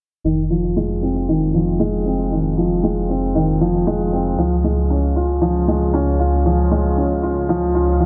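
A felt-muted upright piano, soft and intimate with audible action noise and tape echo, plays an up-front riff over a deep, rumbling detuned saw bass in this moving electronica excerpt at 116 BPM in F minor, moving from Fm7 to Db, while a very quiet, lush unison pad with chorus and phaser enters at 1.7 seconds under a filter sweep and light studio reverb.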